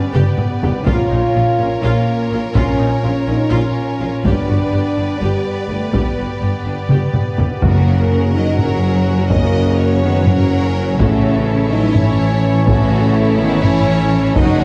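Driving along in 7/8 at 249 BPM (eighths), this adventurous, majestic cinematic score excerpt sets a rich violin melody and a clear, distant second violin line over mellow French horn chords, a shimmering celeste-voiced pipe organ, a bright viola accompaniment, a bass of soft-attack tuba, smooth cellos and expressive double basses, and a band-limited taiko ensemble struck with hard sticks, with a tight vintage trombone section and close, dry timpani joining at 7.6 s, all bathed in wet scoring-stage reverb.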